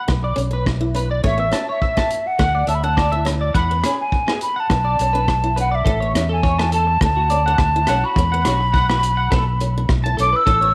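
Highlife guitar band music at 104 BPM in A major, carefree and sunny with a gently swung 4/4 feel, where an airy, hollow flute with chiff and vibrato carries the melody up front over twangy electric guitar arpeggios colored by analog chorus and slapback echo, a woody, boxy old acoustic guitar picking the accompaniment, a round fingered electric bass, and a gritty, saturated breakbeat kit of hi-hat, tight kick and rim click, all in light reverb and small-room ambience as a snippet cut from a longer piece.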